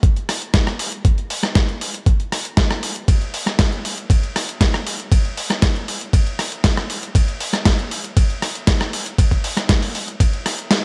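A thumpy electronic kick drum sits up front in this groovy, sunny nu-disco excerpt, compressed and overdriven with a gritty edge, playing until 10.3 seconds. Beside it, a dusty soul drum kit in a sampler style brings hi-hat, ride cymbal, rim click and a medium-tuned snare, also compressed and driven into overdrive, carrying on to the close at 10.8 seconds. Both drum parts keep their natural pitch and ride a straight 4/4 feel through a single section. Light reverb and digital ambience frame the beat, and the bright production recalls 1980s-style digital studio sound.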